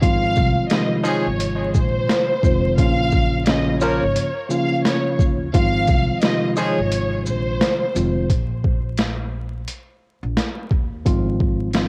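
Up front and gritty, a pitched-down sampler-style drum kit drives this dark, tough boom-bap hip-hop excerpt at 87 BPM with a swung 16th-note feel, its thumpy kick, high-tuned snare, hi-hat and shaker compressed, overdriven and re-recorded in a large room. A worn, slightly out-of-tune tine electric piano, lightly overdriven and heard through built-in speakers, carries the accompaniment over Fm7/Ab and Bbm, while a woody pizzicato upright bass on gut strings holds down the low end. A lush bowed violin section with expressive vibrato sings the melody until 8.3 seconds, filtered and colored by cassette tape and analog delay. From 1.0 seconds a dark, jazz-style horn section with octave doubling and a smooth top punctuates the groove with stabs, treated with the same tape and delay. Breaks arrive at 6.9 seconds and continue through a chordless stretch before Fm7/Ab returns, and the whole has little reverb, a home cassette character and a layer of vinyl crackle.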